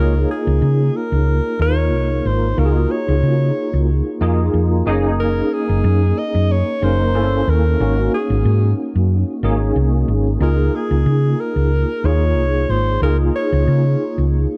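Glossy and breezy, this polished 1980s jazz-funk pop cut from a longer piece moves at an easy 92 BPM in 4/4, with a light swing on the sixteenths and a home key of Db major. An alto saxophone carries the melody with a warm, forceful jazz tone, light vibrato, scooped notes and a smooth top, its punchy phrases trailed by a digital delay. A bright, clean tine electric piano sits up front through a combo amp, shimmering with fast tremolo and ensemble chorus as it comps beneath the horn. A hollow-body short-scale electric bass, played with the fingers, anchors the groove with a round, amped sound that is the most prominent part in the balance. The harmony drifts from Db69 to Gb69, then passes through Gdim7 and Ab9sus4 before settling back on Db69 at 10.4 seconds. Light reverb and a small room ambience frame the dark production.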